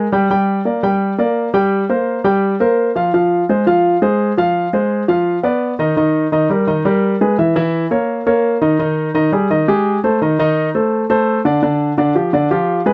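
A solo grand piano opens this short jazz passage, cut from a longer piece. The instrument has a warm tone and sits up front, captured by close, detailed microphones with a light touch of reverb around it. The mood is fiery yet sultry, moving briskly in a straight four-beat feel as the piano ranges from its lower middle register up into the treble. The opening stretch passes through dark minor and diminished harmonies. At 6.0 s it turns toward richer, colorful chords with added and extended tones, carrying on until the passage breaks off at 12.9 s.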